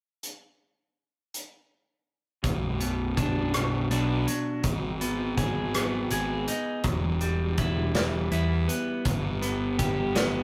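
Dark and brooding, this quiet-loud alternative rock fragment in B minor moves at a slow 54 BPM in 6/8, with a big acoustic drum kit of punchy kick, medium-tuned snare, rim click and hi-hat opening alone at 0.2 seconds before the other parts arrive at 2.4 seconds. A dark, slightly broken-up picked electric guitar plays arpeggios over chords moving from Bm through G#m and Em to G, while a fuzzed, overdriven picked bass sits underneath, all three up front. The rough rehearsal-room sound carries light reverb and warm saturation, and the piece is cut from a longer work.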